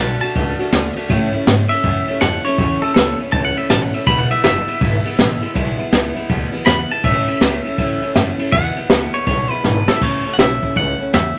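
A swung 4/4 rockabilly groove at 162 BPM in A major drives this rowdy, upbeat excerpt, where a clean, twangy electric guitar solos over the first 10 seconds above a bright, full-bodied picked acoustic guitar, a woody, thumpy pizzicato upright bass and an up-front brushed drum kit with dark cymbals, a high-tuned snare and a boomy kick, whose fill at 9.6 seconds leads into a new section at 10.0 seconds, the chords moving from D through A and E, all set in a club reverb.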